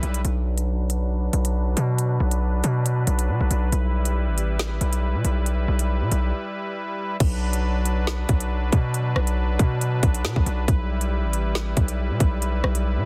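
A distorted 808-style bass dominates this dark, ominous drill cut, its saturated, heavy sine tone carrying a noise layer with a fast attack that decays, sitting up front across the whole 13.1 seconds in B minor at 138 BPM with a half-time feel. The electronic drum kit hits just as hard, pairing a hard-clipped kick and woody snare with crisp hi-hats, rim clicks and crash cymbal, while a soft, shimmering pipe organ with string celeste stops holds romantically voiced sustained chords, low-pass filtered and swept from 0.2 to 7.2 seconds. The harmony moves between Bm and Em, a break lands at 6.3 seconds before the second half, and the mix is dry, dense and heavily limited.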